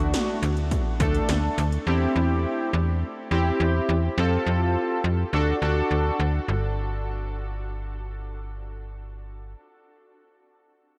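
Wistful yet bright, this short synth-pop excerpt moves at 104 BPM in a straight 4/4, soaked in a huge, dreamy reverb that lingers long after each sound. Punchy 80s electronic pad drums with a gated snare and metallic hats play only briefly at the start and stop by 1.9 s, while a snappy, up-front FM slap bass carries the low end until 9.6 s. Above it, a fat, detuned sawtooth synth brass with chorus and a filter sweep holds chords moving from D through C/E and F back to D before dropping out at 6.2 s, leaving a chordless stretch.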